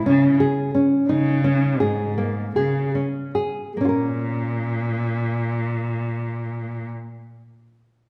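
Heard through a wet recital-hall reverb, this short cut from a longer piece of contemporary chamber music in 7/8 and Bb minor runs at 141-180 eighth-note beats per minute with a pensive yet urgent mood: an up-front, full-bodied nylon-string guitar plays thumb-plucked classical arpeggios with audible finger squeak over a smooth, bowed cello bass line from a single player, sung with vibrato, the pace slowing through the opening 3.8 seconds before a second section begins on a Bb minor chord.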